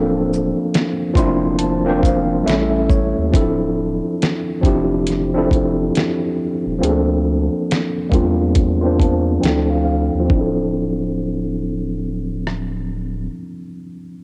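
This short excerpt, taped on cassette at home with a light reverb, opens on a hazy, nostalgic lo-fi hip hop groove at 69 BPM in 4/4, swung at 64% on the sixteenths, in D minor. Up front, a worn tine electric piano, slightly out of tune and lightly overdriven, plays chords through built-in speakers, its tone darkened by a low-pass filter and softened by cassette tape, with a filter sweep running across the first 10.3 seconds. Beneath it, a deep, thick sine sub bass, saturated and sustained with a fast attack, holds the low end. The sampler-style drum kit, compressed, pitched down and muffled on tape, enters at 0.3 seconds with a thumpy kick, a medium-tuned snare, rim click, hi-hat and shaker, and sits up front alongside the keys. The harmony moves through suspended, seventh and ninth chords such as C13sus4/D, A7 and Dm9. A brief new section begins at 10.3 seconds before the drums drop out at 12.7 seconds, leaving the bass and then the piano to ring on to 14.2 seconds.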